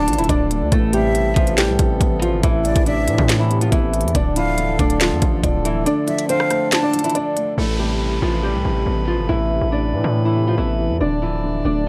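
A fingerpicked nylon-string guitar carries the melody over dark, boxy grand piano with audible action noise, a reedy, breathing pedal harmonium and a distorted, saturated 808-style bass, while a breathy jazz flute with a soft attack adds a second line until 7.1 seconds. This hard-hitting, melancholic half-time trap excerpt gets its punch from an up-front electronic kit of knocking kick, sharp snare, crisp hats, rim clicks and finger snaps; the kick drops out briefly before the whole kit stops at 7.5 seconds. An electronic downlifter then enters at 7.6 seconds, and the gritty, dry small-room sound keeps the guitar and piano muffled under low-pass filtering, with tape echo on the guitar and flute.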